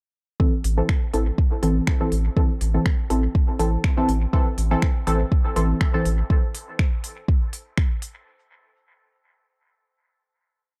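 Dub techno at 122 BPM in A minor, hypnotic and deep, built on a single A minor groove: an up-front, layered four-on-the-floor kick drives from 0.4 seconds, a round square-and-sine analog bass plucks off-beat notes on A1 with sidechain pumping, a smooth deep house kit adds programmed hats and a finger-snap backbeat with dub echo, and muted, detuned sawtooth chord stabs between E3 and A4 move one shape in parallel through a dotted rhythm with filter sweeps, chorus, phaser, pumping and dub echo, all in a dark, dry production with slightly swung 16ths.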